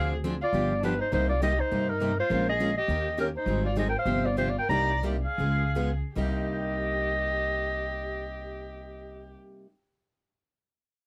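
A breathy clarinet leads this fiery, swinging excerpt of acoustic string swing in C minor, its subtone melody carrying a light vibrato and a vintage jazz character up front in the mix. Beneath it, a single bowed violin traces a smooth, expressive second line with vibrato and portamento, while a bright, picked steel-string acoustic guitar supplies the accompaniment. A woody, thumpy upright bass with gut strings plays pizzicato, sitting forward alongside the clarinet. The 4/4 pulse swings its eighth notes at a tempo between 143 and 204 BPM, easing into a slowdown from 3.5 to 6.2 seconds as the harmony moves from Dm7b5 and G7 toward Abmaj7 and a G7sus4, then settles back on Cm7. Light reverb gives the quartet a gentle sense of space, and the guitar carries on briefly after the others stop, ringing out until 9.7 seconds.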